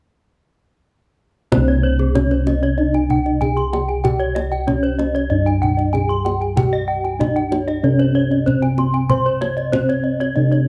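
Closely miked with light reverb, this ceremonial, brilliant stretch of Balinese gamelan in C pelog moves at 95 BPM in a straight 4/4 from 1.5 seconds on. A mellow, dark bronze metallophone carries the melody under padded disc mallets. A second metallophone plays dry, full arpeggios with a wooden mallet, and a third joins at 1.7 seconds with bright, airy arpeggios struck by a horn mallet, each of the three shimmering with the beats of paired tuning. Round, up-front bossed gongs anchor the bass, while a tight kendang drives the percussion.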